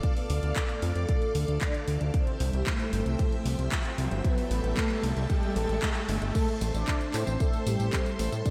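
A bittersweet, danceable italo disco excerpt opens with a round, brassy synth-brass melody carrying chorus and a diffuse ambient delay over lush, vintage string-machine chords, a punchy, up-front electronic kick and a house kit of crash, handclaps, tambourine and hi-hat. A fat, detuned analog bass enters at 0.3 s, and a background riser runs from 1.2 s to 6.3 s as the chords move from Dm through C to Am7 before settling on Am. The mix is soaked in a long hall reverb, giving it a dreamy glow.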